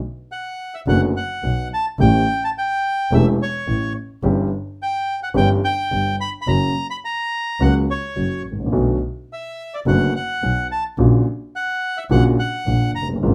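A melancholic, sultry tango in B minor at 107 BPM with a rubato feel, this short passage cut from a longer piece opens with an up-front bandoneon carrying the melody in a reedy, airy upper register from 0.3 seconds. At 0.9 seconds a dark, woody upright piano with short sustain enters to supply the accompaniment, together with a single bowed double bass whose vibrato and portamento give the low line an expressive, smooth edge. Light reverb surrounds the trio as the chords move from B through A7 and F# to a closing F#/A#.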